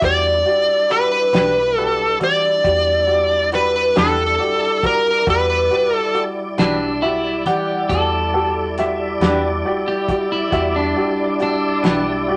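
Slow blues in 12/8, mournful and smoky, cut from a longer piece and resting on a single Em7 chord. A bright, overdriven lead guitar carries the melody up front until 6.2 seconds, a clean picked electric guitar with tremolo joins the accompaniment at 1.3 seconds, and from 6.6 seconds a compressed guitar at the edge of break-up plays a second line. Underneath sit a woody upright piano, a full tonewheel organ with slow rotary speaker, light overdrive and chorus vibrato, a round, foam-muted fingered bass and a dark soul drum kit with fat snare and tight kick, all in moderate studio reverb.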